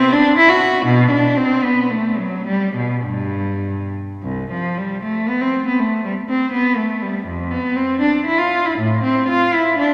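A long, wet church reverb of 3.1 seconds surrounds this short passage from a longer piece, giving it a spacious, resonant sound. It is a classical, baroque-style suite movement for unaccompanied cello, serene and flowing in mood, moving in 3/4 at 95 to 122 BPM with a free, rubato feel. A single bowed cello plays solo from start to finish, placed up front, with a rich, smooth and even tone coloured by vibrato and reaching from C2 up to F#4. The music begins in G major and shifts to C major at 4.2 seconds, where the opening material returns. The instrument is tuned to A4 = 442 Hz.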